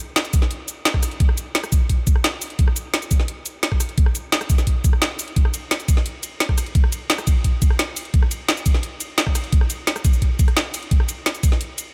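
Futuristic and aggressive, this drum and bass excerpt at 173 BPM in a straight 4/4 pairs an overdriven, knocking electronic kick drum up front with a layered drum kit of woody snare, bright hi-hats, ride cymbal, rim click and cabasa. Both parts are coated in overdrive and studio reverb and set in a digital ambience, with the kit entering at 0.2 seconds and the kick at 0.3 seconds.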